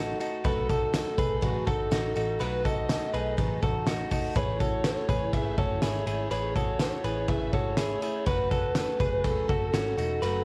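Opening on shimmering picked twelve-string acoustic guitar, twangy clean electric guitar arpeggios and a round, foam-muted bass, this bright, nostalgic jangly indie pop excerpt soon adds a loose drum kit with a fat snare and punchy kick, a faint jingly tambourine, and a dark, overdriven lead guitar melody from 0.5 seconds, moving from B7 through Amaj7 to F#m with a cassette-tape, small-room home-recording character.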